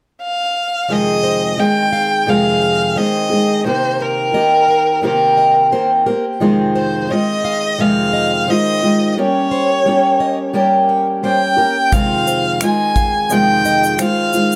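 A rich, bowed violin opens at 0.2 s, a single player with smooth, even vibrato that sits up front yet carries a distant quality, introducing this tender, reflective acoustic pop excerpt in F minor at 87 BPM with a gentle 16th-note swing. Under it, a fingerpicked twelve-string acoustic guitar enters at 0.9 s, its octave-doubled strings shimmering up front as it carries the accompaniment through chords of Fm7, Cm7 and Gdim. A picked, plugged-in steel-string acoustic guitar follows in the background with arpeggios, an occasional finger squeak adding intimacy. At 11.9 s a studio drum kit joins with finger snaps, shaker and a punchy kick, its airy, polished sound set in a small room. Close, detailed microphones and moderate reverb give the recording a clear, concert-like presence.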